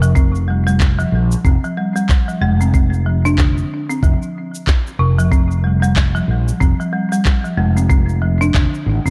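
Organic downtempo at 93 BPM in 4/4, with a loose sixteenth-note swing and a hypnotic, warm mood, this short passage is cut from a longer piece and sits in F dorian. A folk marimba struck with hard mallets carries the arpeggios, its woody, rustic tone dry and percussive yet smooth, placed up front and trailed by tape echo. Beneath it, a fretless electric bass holds the low end with a bright, growly, amped sound, also up front and the louder of the two melodic parts. An electronic kick drum with a knocking character enters at 0.2 seconds and drops out at 8.7 seconds, prominent in the mix and touched by studio reverb. Electronic cabasa and handclaps sit further back, adding a produced texture with their own studio reverb. The overall production is dark and warm with light reverb.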